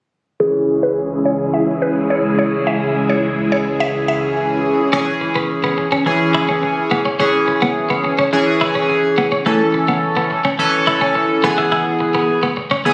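Pop at 106 BPM in C# minor, energetic and driving, this excerpt opens with a woody, percussive mallet-like synth pluck carrying the melody over a glossy, pulse-width-modulated chorused polysynth that plays throughout and a swirling, warbling phased string machine holding sustained chords under a filter sweep, before a clean, compressed twelve-string electric guitar enters with a lush chorused riff at 4.9 seconds as the harmony moves from C#m to A and E, all set in a lush hall reverb with a phone-in-the-room feel.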